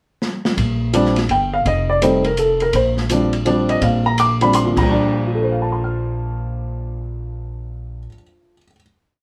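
A short drum fill at 0.2 s opens this brisk, swinging jazz piano trio piece in 3/4 at 166 BPM in Bb major, where a small-room kit with dark cymbals, a boomy kick and sticks on the ride supports a woody pizzicato upright bass playing a two-feel from 0.6 s, while an intimate, mellow baby grand, its action noise audible, states a bebop-style theme over syncopated rootless comping through Bb5, F7 and Bb6 before settling on a final chord at 4.9 s, heard from further back in a reverberant studio.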